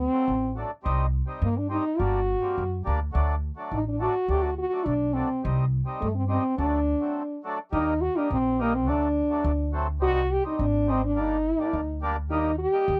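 Soulful and festive, this short klezmer passage, cut from a longer piece, moves at 105 BPM in a straight 2/4 and sits in D phrygian dominant. A French horn carries the melody up front, its tone warm and classical with a light vibrato, yet with a distant, roomy quality. Beneath it, a pizzicato upright bass with steel strings gives a woody, dark foundation, while a reedy, mellow accordion fills out the harmony with a full, vintage, band-limited character. Chords shift among D, Cm, Gm and Eb, and a brief break at 7.2 seconds leads into a new section at 7.7 seconds. The sound is dry and close, in the manner of a 1970s studio recording.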